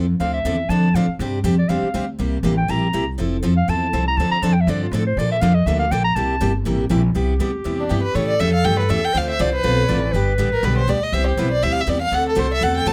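Acoustic string swing in the jazz manouche style, charming and briskly swinging at 242 BPM in 4/4, settling into C major from 7.2 seconds. A bright, full-bodied picked steel-string guitar and a woody, thumpy pizzicato upright bass on gut strings sit up front as the foundation, while a breathy clarinet with scooped notes and a smooth top takes the opening solo as a second line. At 7.8 seconds a warm bowed violin enters with expressive vibrato and portamento to carry the melody, and the recording is dry, close and finely detailed.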